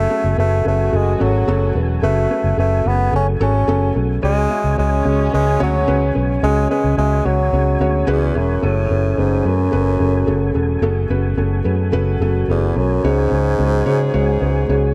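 A warm bassoon carries the melody up front with light vibrato in a classical style, over a punchy, foam-muted electric bass in this driving, dramatic pop excerpt at 109 BPM in F# minor. A felt-muted upright piano adds soft, intimate accompaniment with audible action noise, while a mellow French horn section with a smooth top plays a second line in the background. A clean, percussive tonewheel organ holds sustained chords through chorus vibrato and a fast rotary speaker, as the harmony moves between F#madd9 and C#sus4 and a new section begins at 8.6 seconds.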